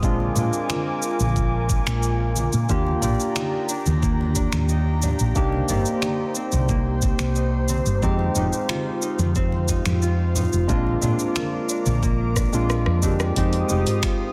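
Sunset chillout at 90 BPM in a straight 4/4, relaxed and unhurried, cut from a longer piece and tuned slightly flat of standard pitch. Soft, mellow electric-piano-like synth keys carry the accompaniment with a touch of chorus, gritty vintage sampler texture, low-pass filtering and digital delay, while an airy, breathy pad holds sustained chords above them with its own chorus shimmer. A dark, round fretless bass sits up front with a woody, hollow-body tone and analog chorus, anchored by a knocking, tape-warm electronic kick and a smooth R&B kit of warm hats, cabasa, finger snaps, rim click, toms and a softly clipped snare, both in studio reverb. Low-tuned congas sound distant and very quiet, and a ringing, fingerpicked Celtic harp enters at 2.7 seconds with arpeggios trailed by digital delay. The chords move from Bb7 through Ebmaj7, Cm7 and Fm7, and a drum fill from 12.4 to 13.4 seconds leads into a return to Fm7, all within a dense, heavily limited modern master with light reverb.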